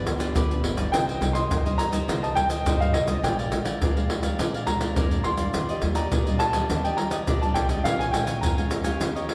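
Set in a church or concert hall with a wet recital hall reverb, this short cut from a longer samba and choro piece moves at 104 BPM in a straight 4/4 with a nostalgic, bittersweet mood. Maracas, surdo and pandeiro sit up front from 0.1 s, with a tight surdo, soft hands and a vintage, band-limited tone. A crisp, picked cavaquinho and a bright, fingerpicked classical nylon-string guitar supply accompaniment, while a woody pizzicato upright bass with steel strings stays in the background. At 0.9 s a warm concert grand piano takes the melody in its upper register, intimate and natural, with audible action noise and deep bass. The harmony passes from G7 to Cm7, Bb7, Ebmaj9 and Bbm7.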